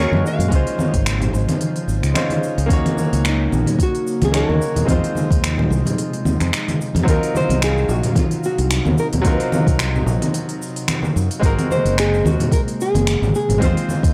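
A relaxed 110 BPM groove in 4/4 swings its sixteenths gently, with a smooth R&B drum kit of silky hi-hat, finger snaps, shaker and congas, and a soft, tape-warm electronic kick that joins at 0.5 s, both re-recorded in a large room. Separate congas ring with soft hands from a distant spot in the background, while a dark, round fingered electric bass sits direct and up front. This sunset chillout piece in Eb dorian has a warm, smooth mood. A boxy, fingerpicked nylon-string guitar carries the melody, and a bright, polished concert grand piano with deep bass and short sustain plays the accompaniment, both touched with tape echo. Behind them an airy, breathy pad with detuned sawtooth and triangle tones, a noise layer and chorus holds slow-blooming chords drifting through Gb69, Dbmaj9, Ebm7 and Fm7 before moving to Ebm69 at 7.1 s. The whole cut, taken from a longer piece, carries a gritty, dry hardware character wrapped in digital ambience.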